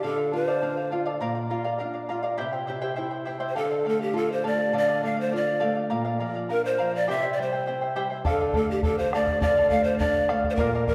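Breathy cane pan pipes with a soft, chiffy attack carry the wistful, melancholic melody of this Andean folk piece in D minor at 102 BPM, sounding briefly at the start and returning at 3.5 seconds over a shimmering, fingerpicked charango with doubled strings and a small, fingerpicked nylon-string guitar, before a round, close bombo joins at 8.2 seconds, all set in the lingering reverb of a concert hall.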